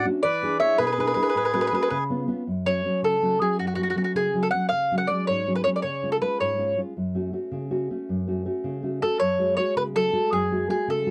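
A mandolin with doubled, woody strings carries the melody up front over a thumb-plucked nylon-string guitar, while a reedy, hollow accordion adds a brief second line until 2.0 seconds in this romantic, passionate Italian folk serenade in F# harmonic minor, moving at 107 BPM in a straight 6/8 through chords such as E7, A6, C#7 and F#m, with the mandolin pausing from 6.8 to 9.0 seconds as the fresh-stringed classical guitar continues, all caught in a dry, close 1970s-style studio sound with light reverb, cut from a longer piece.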